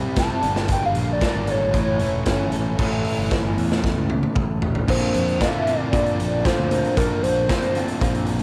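Cool and moody, this short indie rock excerpt moves at 115 BPM in a straight 4/4, with a lo-fi home-cassette character and light reverb. A crunchy, bright overdriven guitar and a darker, slightly broken-up guitar through a small old amp both play riffs, the latter compressed and sitting in the background with analog chorus and delay. Underneath, a growling fingered bass with overdrive adds a bright, amped edge, while a raw garage drum kit sits up front with a punchy kick, medium-tuned snare, hi-hat, toms and crash in a gritty, pumping stone room. A hollow, woody square-wave lead carries the melody with warbling vibrato, detuning and a moving notch, opening with an analog synth solo over the first 2.8 seconds. The chords shift from Gmadd9 to A, and a drum fill from 3.8 to 4.9 seconds leads into a closing section on Bbadd9.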